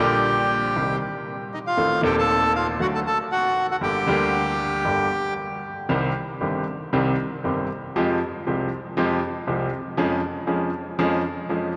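A vast, echoing cathedral reverb surrounds this passionate, melancholic tango fragment, cut from a longer piece and taken at 117 BPM in 4/4 with a rubato feel, in G minor before moving to C minor at 5.9 s. A reedy, dark, mid-forward bandoneon sits up front carrying the melody until 5.3 s. Beneath it, a bright, intimate baby grand piano with polished tone, short sustain and audible action noise plays the accompaniment through to 11.7 s, its chords running from Gm/Bb through Adim and D to Fmadd9 and Db/F.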